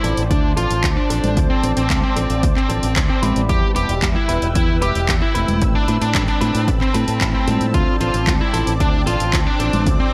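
An up-front, dark overdriven lead guitar carries a bittersweet, nostalgic melody with digital delay through this 113 BPM italo disco excerpt in D dorian, over a lush, detuned sawtooth pad with chorus and phaser, a compressed clean electric guitar playing stabs under a filter sweep, a bright fingered bass with an envelope filter and tube saturation, a house kit of congas, handclaps and hi-hat in gated reverb, and a punchy, tape-warm electronic kick entering at 0.3 seconds, all moving from Dm7 through Em and Amadd9 back to Dm7 in digital ambience.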